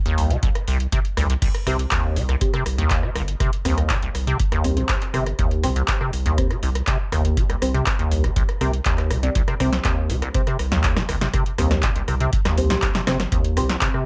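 A squelchy, resonant liquid acid bass riff with a filter sweep, chorus and tape echo sits up front in this raw, trippy acid house excerpt in C minor at 121 BPM, riding over a round, sidechain-pumping analog bass, a deep electronic kick and an electro analog drum machine with punchy snare, handclaps, rim clicks, crash and metallic hats in a large room, while from 1.7 seconds soft, dark chord stabs with detuned sub-octave tones, phaser, tape echo and gritty 12-bit sampler texture float beneath a light reverb.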